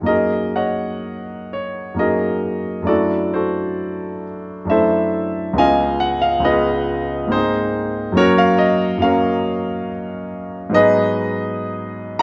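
Flowing in a rubato triple metre, this luminous, serene impressionist solo piano fragment, cut from a longer piece, features a clear, natural concert grand with deep bass sitting up front in a moderate recital-hall reverb, drifting through rich extended harmonies such as Gb69, D9/F#, Db9 and Gbmaj7 before settling on Abm7 at 10.8 seconds.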